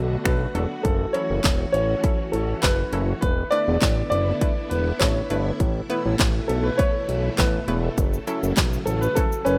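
Dance-pop at 101 BPM in a straight 4/4 feel, energetic and driving. This is cut from a longer piece and moves through Bm7, F#m7, E7sus4 and Asus2. A polished baby grand piano carries the melody with digital delay over a fat, saturated analog bass and a punchy, layered electronic drum kit of kick, fat snare, bright hats, shaker, handclaps and finger snaps, which enters at 0.3 s. Shimmering vintage string-machine violins hold slow-attack chords with ensemble chorus and a hollow, bouncy square pluck sits in the background from 0.2 s, both pumping to the sidechain along with the bass, in a dry, rough home-demo mix.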